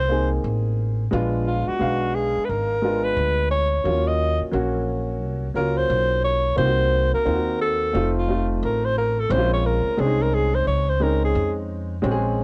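A loping 4/4 groove with swung sixteenths sets up this cool, mellow jazz-hop piece, cut from a longer track. A breathy alto saxophone carries the solo melody with a soft, whispered subtone and light vibrato until 11.6 seconds. Beneath it, a woody pizzicato upright bass and a dark, smooth vintage upright piano move through jazzy minor-ninth and altered dominant chords, all under light reverb and the warbling pitch drift of worn cassette tape.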